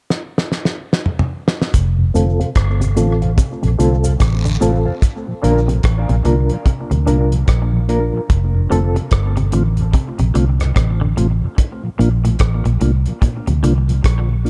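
A swung dub reggae groove at 73 BPM in F major opens with a drum fill on a cloth-damped, thuddy kit with a fat snare and tight kick. A dark, round, foam-muted fingered bass joins up front at 1.7 seconds, as a filter sweep runs through the rest of this hazy, spacious fragment of a longer piece. Cabasa and guiro rattle briefly through dub echo beside a bright, twangy guitar at the edge of break-up, and a reedy electric piano with fast tremolo plays stabs until 9.0 seconds, while a flute-like tonewheel organ turns through a slow rotary speaker and a clean, hollow-body semi-hollow guitar picks low arpeggios in the background of an echo-heavy small room.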